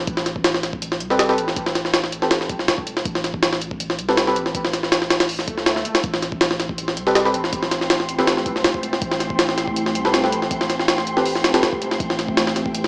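A dark, frenetic slice of drum and bass with a jungle edge, heard through a lush digital hall reverb that still carries a small-speaker character. Up front, a gritty, pitched-up sampler-style drum kit drives the track, its thumpy kick, high-tuned snare and hi-hat compressed and pushed through overdrive with a touch of small-room ambience. Beneath it, a long, mellow 808-style sine bass sustains deep in the low register from the very start. A soft, nasal chord stab on an Am9 colour surfaces from 1.1 seconds, plucked and decaying, thickened with chorus and trailing dub echoes. After a brief electronic swell in the background, an airy, breathy wind-like noise texture fades in at 6.8 seconds and lingers behind the mix with its own reverb.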